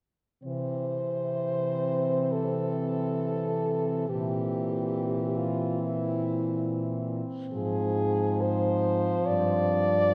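A clear French horn with light vibrato sings the tender, lyrical melody up front in this classical horn-quartet fragment cut from a longer piece. A warm second horn sits in the background, a vintage-toned horn plays accompaniment, and a mellow, soft-attacked, close-miked horn holds the bass. All four enter at 0.4 seconds and move in unhurried rubato through a C, C7/Bb, Fm/Ab and G7(no3) progression, bathed in a wet church reverb. The second horn drops out at 9.9 seconds, just before the others close at 10.1.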